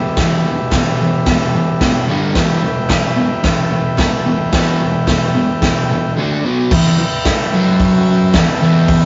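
Garage rock with a menacing, raw edge at 110 BPM in E minor, this short excerpt is driven by an up-front, double-tracked fuzz guitar riff, a punchy, gritty drum kit with a medium-tuned snare, crash and hi-hat, reedy combo-organ chords bathed in spring reverb, and very quiet, hollow group handclaps from 0.7 to 5.2 seconds, all captured in a rough rehearsal-room sound with a rolled-off top before shifting to a new section at 6.7 seconds.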